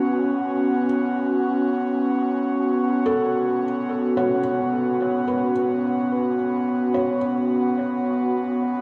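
A soft, breathy pad and a felt-muted upright piano begin together, setting a reflective, melancholic ambient mood at an unhurried pace in a straight four-beat metre. The pad sits up front, holding sustained chords on an F#sus4 harmony. Its airy tone blends triangle and sawtooth layers with a noise layer, slow attack, long release and a shimmering chorus. Beneath it, the piano plays mellow arpeggios with an intimate, muffled quality, and the audible clicks of its action add a close, human texture. An analog delay trails the piano's notes, and a wet spring reverb with a long tail gives the echo-heavy mix a dreamy, suspended feel across this 8.8-second fragment of a longer piece.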